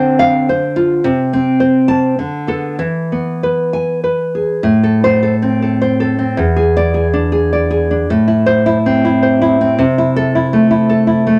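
A single nylon-string guitar, full-bodied and placed up front, carries this wistful, melancholic romantic piece in A minor, fingerpicked in a rubato 3/4 at around 95-110 BPM and ranging from deep bass notes to high treble. The harmony moves through Dm7, Am/C and Bm7/D to a dominant E chord, then a second phrase beginning at 4.6 seconds settles between Am and E7 before landing on Am/C at 9.8 seconds. Moderate studio reverb gives the guitar a gentle sense of space in this brief cut from a longer work.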